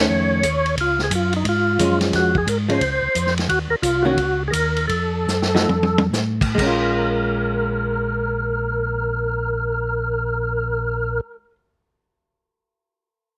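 A percussive tonewheel organ carries the melody in this bluesy, smoky soul jazz organ trio excerpt, its fat, lightly overdriven tone colored by key click, chorus vibrato, a slow rotary speaker and slapback echo. Beneath it, a second tonewheel organ holds down the bass with a mellow, round, clean sound, also turning through a slow rotary speaker. A vintage hollow-body jazz guitar comps alongside with a dark, picked, compressed electric tone and its own slapback echo, playing until 11.6 seconds. The vintage drum kit enters at 0.4 seconds with a punchy kick, a medium-tuned snare and dark cymbals, and it plays a fill just before dropping out at 6.7 seconds. The swung groove slows down through the middle passage, and the whole trio sits up close in a dry space with little reverb.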